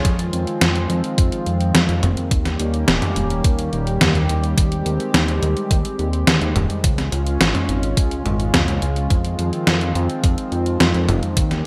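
A straight 4/4 pulse at 106 BPM drives this nocturnal, moody synthwave excerpt in F minor, where an overdriven, thumpy electronic kick and a detuned 8-bit drum machine with hi-hat, medium-tuned snare, toms and gated reverb sit up front, while a fat sawtooth analog bass with a filter pluck and a shimmering, chorused pulse-width pad both pump with sidechain as the pad holds slow-attack chords from Fm7 through Eb7, Abmaj7/Eb and Db, set in light reverb with a bright 1980s-style digital sheen.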